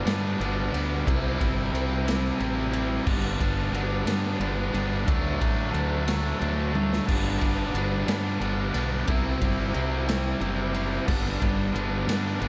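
A biting overdriven guitar and a thick, dark fuzz guitar open together on a riff in G major, joined almost at once by a growling fingered bass and a raw garage drum kit. This is quiet-loud alternative rock in a slow 6/8 at 60 BPM counted in dotted quarters, cut from a longer piece, with a bittersweet, anthemic mood as the chords move through G, C and D before returning home. The picked overdriven guitar sits up front with a slapback echo, while the fuzz guitar adds a heavy, distorted layer in the same register. The bass is punchy and overdriven, heard both direct and amped, and the acoustic kit sounds gritty and saturated in a small, pumping room, with dark cymbals, a boomy kick and a rolled-off top. A short drum fill around 6.8 seconds leads back to G at 7.1 seconds, and the whole track carries a light studio reverb.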